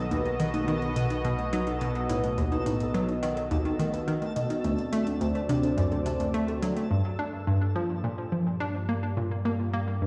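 A large, reverberant studio space surrounds this hypnotic, expansive stretch of sequencer-driven ambient space music, which sounds as if it were played through a big sound system in a bare room. It moves at 106 BPM in a straight 4/4, settling into G minor at 6.9 s after chords of B and D7. Up front, a bright, detuned analog pluck with a sawtooth edge and ring modulation drives a low riff through chorus and tape echo, while an evolving, warbling drone with pulse-width modulation and tube saturation holds the bass. A resonant pad sweeps through sustained chords with a slow filter swell, and a soft, round pluck sits darker in the background, spinning arpeggios through cassette tape coloring and tape echo. Until 6.9 s, a faint twinkling granular shimmer floats on a single high note, and electronic hi-hat and congas with metallic hats add a tape-warm pulse.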